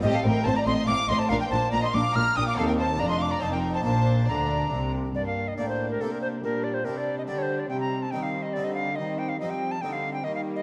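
An airy wooden alto recorder leads this festive, brilliant baroque-style concerto movement, sitting up front with a tongued attack, audible chiff and vibrato as it carries the melody between A4 and F6. Cut from a longer piece, the passage moves at 141 BPM in a straight 3/4, opening in Bb major before turning to G minor at 5.2 s. A chamber violin section also carries the melody from the background with a warm, close tone, while a rich second violin line with a smooth top and a nasal, dark viola section fill the middle, all bowed in period style with gut-string colour and light vibrato. Beneath them, a full, Italian-style harpsichord with three sets of strings plucks its accompaniment, and a cello section and a dark studio double bass section share the bass line until the double bass stops at 5.1 s. The sound is dark and warm overall, set in a moderate concert hall reverb that lends the ensemble a sense of space.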